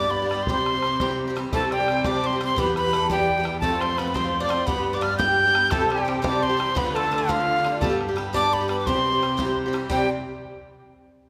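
An airy, up-front tin whistle with vibrato and chiff carries the melody of this lively Celtic jig in 6/8, over a shimmering, reedy musette accordion second line, a boxy, picked swing-style acoustic guitar with finger squeaks, and a dark, softly bowed cello bass. A tight, damped bodhran joins at 0.2 seconds, and a metallic, double-strung Irish bouzouki adds another second line from 1.5 seconds as the chords move from C through Em, F and G back to C. The whole bright passage, cut from a longer piece, sits in the moderate reverb of a church or concert hall.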